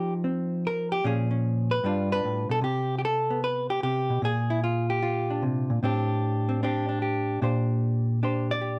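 A hollow-body electric jazz guitar opens alone, fingered and clean, with a dark, compressed tone sitting up front in the mix. This is solo jazz with a relaxed, swinging feel, the eighth notes swung at 67% in four. The guitar ranges from G2 up to D5, moving through chords such as Fsus2, Bbm7 and G9 in the opening 2.6 seconds before a second passage settles on C5, Bb7 and Am7. It closes on a Bb69 chord at 7.4 seconds. Close, detailed microphones and a light reverb give the playing an intimate presence in this short fragment of a longer piece.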